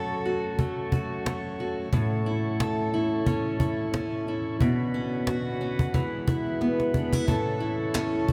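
Carefree and easy-going, this acoustic pop excerpt puts a fingerpicked parlour steel-string guitar up front, with a smooth, clean tonewheel organ holding sustained chords through a slow rotary speaker, its key click audible. A woody cajon, played close with hard hands and faint snares, enters at 0.3 s and plays a drum fill from 6.6 s. A crisp, saturated group handclap sounds briefly in the background at 7.9 s, all set in a vast, echoing cathedral reverb over a lightly swung groove that moves from F#m through A, Bmadd9 and Eadd9 before returning to A.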